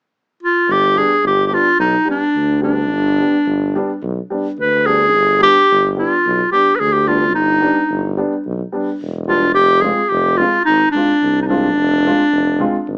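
Bittersweet and soulful, this klezmer excerpt moves at a straight 108 BPM in G phrygian dominant, with a clear, soft-attacked clarinet carrying the melody up front from 0.4 seconds in a classical style. A dark, close-miked tuba holds the bass from 0.7 seconds, and a mellow, woody upright piano with a vintage character and long sustain fills in the accompaniment from 1.0 seconds, the harmony resting on G before shifting to Fm at 9.6 seconds. Light reverb and a small-speaker sound color the whole recording.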